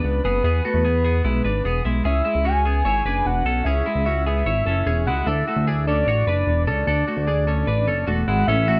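Jangly indie pop at 149 BPM in 4/4 with a breezy, nostalgic mood, this short cut from a longer piece sits on an E chord as a round, detuned synth lead with chorus and vibrato carries the melody over bright, twangy twelve-string electric guitar arpeggios and a glossy, up-front chorused synth bass, all within a moderate small room reverb across its 8.8 seconds.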